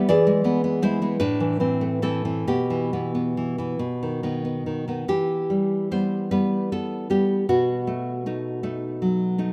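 Intimate and wistful, this short cut from a longer romantic piece for solo classical guitar unfolds in E minor at a slow, rubato pace of roughly 44-54 BPM in 6/8. A single nylon-string guitar carries everything, fingerpicked with a full-bodied, deep classical tone that sits up front and spans from A2 up to D5. The harmony drifts from E7 through Am and Em/B to a B chord, then settles on Em at 5.1 seconds before leaning toward B7 at 7.5 seconds, giving the phrase a searching, unresolved pull. A moderate, lush hall reverb with a long 2.9-second tail surrounds the instrument, while the rough home demo mix keeps the sound personal and unpolished. The tuning sits slightly below standard pitch, at A4 = 439 Hz.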